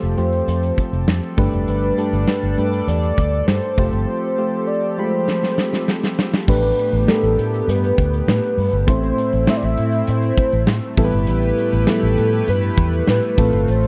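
Nostalgic yet urgent, this 1980s-style pop excerpt moves at 100 BPM in a straight 4/4, cut from a longer piece. A velvety, detuned sawtooth synth lead carries the melody between A4 and E5, touched with vibrato, chorus and a slapback echo. Beneath it, soft, warbling electric-piano-like synth keys supply gentle accompaniment, while a shimmering pulse-width pad holds sustained chords with a bright, retro glow. A dark, foam-muted fingered electric bass sits up front with a round tone alongside a huge arena drum kit of punchy kick, medium-tuned snare, hi-hat, tambourine and crash cymbal. The harmony moves through Fadd9 and Gadd9 in the opening section, and a drum fill from 5.3 to 6.5 seconds leads into a second section at 6.5 seconds that turns toward Am and Em. The whole is framed by a small room reverb in a dry, close recording with a 1970s studio character.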